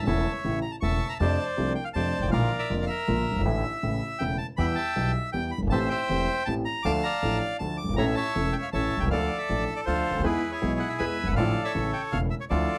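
A reedy, bright bandoneon carries the melody up front from the first moment over a polished, present grand piano accompaniment, joined at 0.1 s by a dark, woody pizzicato upright bass on steel strings, in a sultry, passionate tango at 159 BPM in a rubato 3/4 that moves from A through F6, Bb, Em and Dm before resolving back to A, all set in a moderate studio ambience and cut from a longer piece.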